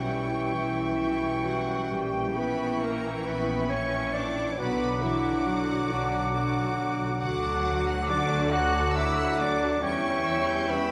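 A slow, lyrical romantic orchestral passage in 6/8 at 45 BPM, played with rubato, moving from B minor toward D major at 7.2 s, with the intense, distant violin section carrying the melody over secondary lines from a bright solo oboe, an airy, hollow flute group, a second rich violin section and a soft-attacked solo clarinet. Underneath, a background viola section and a roomy bassoon accompany, a mellow French horn section holds sustained chords, a ringing harp plays arpeggios, and smooth cellos join the focused double basses on the bass line. The whole short excerpt is bathed in a wet scoring-stage reverb, with the chords passing from C#m7b5/B through diminished harmonies to Bm and D.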